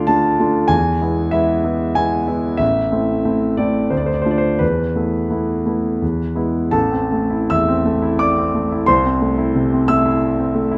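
A grand piano opens alone on a D minor chord, its smooth, vintage tone placed up front in this romantic classical character piece. The mood is stormy yet bittersweet, and the playing moves in three with a rubato feel that lets the pulse stretch and give. The harmony leans from D minor to E and settles on A minor, then passes through D minor and a suspended E on its way back to E. At 6.7 s a new passage begins on A minor, later shifting to A minor over C, before the fragment breaks off at 10.8 s as part of a longer work. The piano spans deep bass to high treble inside a stone room whose wet reverb leaves a lingering halo around each chord.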